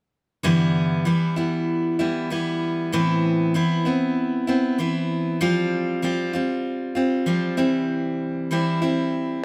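Sunny and carefree, this short pop excerpt rolls along at 97 BPM in 4/4 with a light swing on the sixteenths, set in G mixolydian with tuning a touch above standard. A single picked steel-string acoustic guitar carries the whole thing as accompaniment, sitting up front with a full-bodied dreadnought tone. It plays from 0.4 to 9.4 seconds, ranging from G2 to F4. The chords move from G6 through Amadd9 and Fsus2 before settling on C, giving the passage an open, easygoing colour. A moderate studio reverb adds a gentle sense of room around the guitar.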